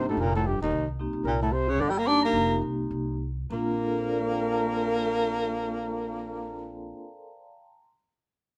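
Jazz at a brisk swing of 192-226 BPM in Bb major, this warm, swinging fragment of a longer piece eases into a slowdown between 1.2 and 3.5 seconds as the harmony moves through suspended and minor seventh chords to a lush major ninth. A breathy, close-miked baritone saxophone carries the melody up front with subtone, vibrato and scooped notes, while a mellow trumpet with light vibrato adds a second line above, and a growly, woody pizzicato upright bass anchors the bottom. A metallic, ringing vibraphone with medium hard mallets and a vintage, band-limited sound accompanies throughout under light reverb, letting its tones hang on alone until 7.9 seconds after the other parts stop.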